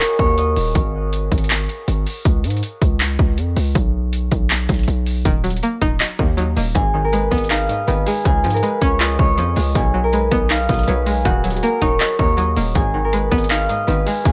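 A punchy, heavy 808-style bass sits up front, its sine tone with a noise layer striking with a fast attack and decaying across the low register, driving a menacing trap beat at 160 BPM in a half-time feel. The electronic drum kit hits just as hard, pairing a hard-clipped kick with metallic hi-hats and handclaps. A mellow, fingerpicked concert harp carries the melody in a ringing acoustic voice, softened by a low-pass filter and dub echo; it drops out briefly and returns at 6.8 seconds. Underneath it, a bright, twangy string-like resonator pluck enters at 5.3 seconds with a vintage, warbling sawtooth character, chorus, a filter sweep and its own dub echo, moving through dark minor chords such as Ebm and Abm. The echo-heavy digital ambience gives the whole cut a cavernous sheen before a barely audible electronic swell arrives at 14.3 seconds.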